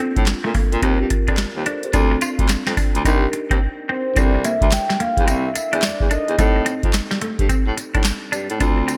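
Punchy and confident, this new jack swing R&B excerpt grooves at 108 BPM with a swung sixteenth feel, as a booming analog drum machine with deep kick, crisp snare, metallic hats, handclaps and tambourine drives up front beneath a mellow, vibrato-tinged baritone saxophone playing the bass line, a twangy clean electric guitar riff with analog chorus, and a dark, round FM electric piano treated with chorus and phaser, while a soft octave-layered synth lead enters during a brief break and carries the melody from 3.9 to 6.6 seconds, all set in a lush hall reverb with bright 1980s-style digital production over chords moving from Bbmaj7 to Am7b5.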